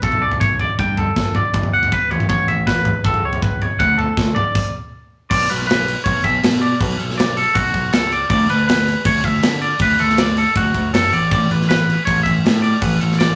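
A straight 4/4 pulse at 160 BPM drives this bright, intricate math rock and midwest emo excerpt in D major, where a clean, twangy electric guitar spins up-front arpeggios over a growling, overdriven picked bass and a polished acoustic drum kit with a tight kick, crash, snare and toms, all caught in a rough rehearsal-room sound with tube saturation and light reverb, a stop at 4.6 seconds before the music resumes at 5.3 seconds over chords such as Gadd9, Bm9 and D69.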